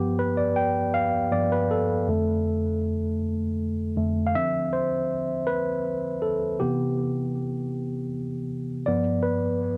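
A slow, swaying 6/8 lilt sets a sultry, late-night R&B mood in this short excerpt from a longer piece, carried entirely by a tine electric piano that plays alone from start to finish. The piano sits up front with a worn, slightly out-of-tune character and a cassette-tape coloring, heard clean through built-in speakers in a small booth-like room. Its chords move from G7 and F6 into a second passage beginning at 4.3 seconds that drifts through Dm7 and Cmaj7 before settling back on G7, giving the home recording an intimate, dusky feel.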